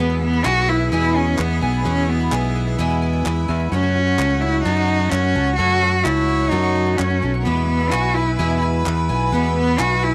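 Indie folk with a building arrangement in E major at 128 BPM, uplifting and warm, cut from a longer piece and moving from E to F#m and back. A single bowed cello carries the melody up front with vibrato and a nasal, boxy focus, while a distant, roomy harmonica with light vibrato adds a clear second line over a shimmering, octave-doubled twelve-string acoustic guitar and a fingered electric bass sitting direct and up front. A woody mandolin plays arpeggios with tape echo in the background, and hollow, dry group handclaps enter at 0.5 seconds, all set in light reverb.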